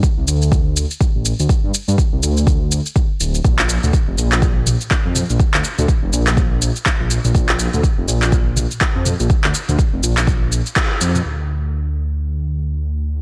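A driving, spiritual afro house excerpt at 123 BPM opens with an overdriven electronic kick drum and an afro-pop drum kit of handclaps, shaker and toms, both up front with small-room grit and filtered percussion, while a deep, rumbling detuned saw bass with tube saturation and sidechain pumping enters at 0.2 seconds, joins the band in an accent at 10.8 seconds and carries on alone after the drums stop, through to 13.2 seconds.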